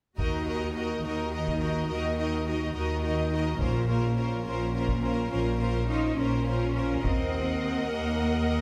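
From 0.2 s, up-front, expressive double basses and rich cellos anchor this dark, heroic excerpt of epic orchestral film score in 6/8 at 70 BPM in Eb dorian, with smooth violas, bright, intense violins and a close, dry taiko ensemble struck with hard sticks until 8.2 s, the harmony moving from Ebm to Bbmadd9 before a focused violin melody on Gb5 enters in the background at 7.0 s as the chord returns to Ebm, the whole string body set in a moderate scoring-stage reverb.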